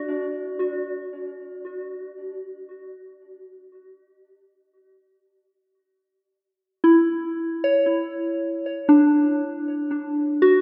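Drenched in an echo-chamber reverb with a 2.5-second tail, this short ambient fragment from a longer piece drifts in free time in D major, tuned to A4 = 443 Hz. A lone soft FM synth bell sits up front, its pure, fast-struck tones decaying gently between D4 and D5, shimmering through chorus, phaser and analog delay. The mood is weightless and luminous, and at 2.9 seconds the bell settles onto a Dmaj7sus2 harmony that carries it to the end at 10.6 seconds.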